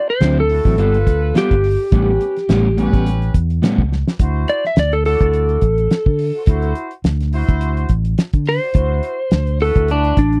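A dry, close recording in a 1970s studio style carries this gritty, swaggering stretch of straight-eighth soul blues at 105 BPM in D mixolydian, cut from a longer piece. A cloth-damped, thuddy drum kit with a fat snare and tight kick sits up front beside round, amped fingered bass. A clear, tight horn section holds sustained chords over D9, G9 and A9, while an electric guitar at the edge of break-up adds stabs with slapback echo until 3.8 s, and the compressed, slightly broken-up slide guitar carries the melody before opening into a solo at 4.2 s, just after a drum fill at 3.9 s.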